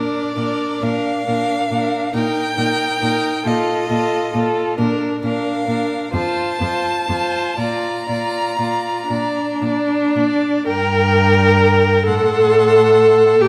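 Classical slow romantic movement for string quartet in B-flat major, this serene and tender passage cut from a longer piece moves in a rubato 6/8 at 36-46 BPM. A clear, focused first violin sings the melody with vibrato over a smooth, even second violin line. The up-front viola carries the accompaniment with a rich tone, and the cello enters at 0.4 s with an expressive bass full of portamento. The harmony settles on B-flat before turning toward G minor at 10.7 s, all set in the lingering reverb of a recital hall.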